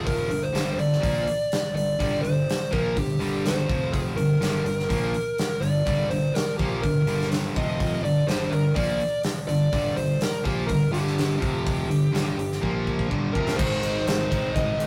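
A rough rehearsal-room recording with warm saturation and a moderate studio reverb carries this menacing, heavy hard rock passage, cut from a longer piece, in G phrygian at 124 BPM in a straight 4/4. Up front, a dark, smooth lead guitar with overdrive and digital delay sings the melody. Beneath it, a bright distorted electric guitar and a cranked stack guitar set further back both play the low, picked riff. A fuzz-soaked, fingered electric bass sits in the background with a punchy, overdriven tone. An airy, polished acoustic kit, forward in the mix with a punchy kick and medium-tuned snare, drives the groove with crash, ride and hi-hat and plays a fill from 12.6 to 13.6 seconds. The harmony circles between Gm and F5, then climbs through G5 and Bb5 before shifting to Ab at 13.6 seconds, where a very quiet, double-tracked, crunchy overdriven guitar joins the riff.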